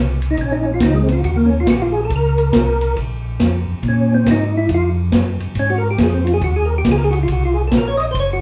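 A mellow, dark tonewheel organ opens the bass line at 0.0 seconds, with slow rotary speaker and chorus vibrato, and a swinging big-band drum kit joins on hi-hat, kick, snare and ride just after, its punchy kick and medium-tuned snare set in a roomy studio space. From 0.3 seconds a second, percussive tonewheel organ with third-harmonic percussion carries the melody over Bb minor changes at a swung 139 BPM in 4/4, its round, clean tone also turning through a slow rotary speaker. The brief soul jazz organ trio passage has a late-night, bluesy mood, heard from further back in a club reverb.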